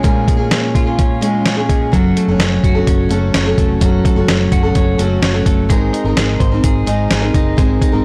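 Jangly indie pop with a nostalgic, bright mood, this short excerpt pairs a picked steel-string acoustic guitar's accompaniment with clean, compressed twelve-string electric guitar arpeggios through analog delay, over an up-front, gritty sampler-style drum kit with a thumpy kick and fat snare, while a dark, round, foam-muted electric bass enters at 1.9 s, all in a blown-out, overdriven recording with light reverb.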